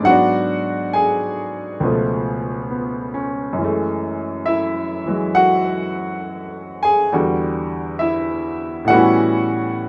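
Cool and moody, this short solo jazz piano excerpt in F# minor swings gently at 68 BPM, with a clear, up-front grand piano ranging from C#2 to G#5 moving through G#m7b5, C#7b13, F#m9, Em9 and A13 in a small room with moderate ambience and a rough home-demo feel.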